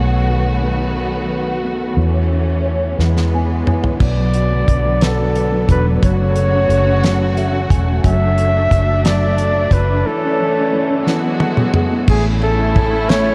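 A dreamy mix soaked in a huge ambient reverb frames this swaying, romantic six-eight pop ballad in A major at 59 BPM, cut from a longer piece. A felt-muted upright piano, soft and boxy with a lush chorus, and a smooth-topped studio string section holding sustained chords open over a dark, round, foam-muted electric bass, with the piano adding fills. A damped 70s drum kit with a fat snare and tight kick enters with a fill at 3.0 seconds, and at 4.0 seconds a flugelhorn takes the melody with vibrato, scooped notes and analog delay.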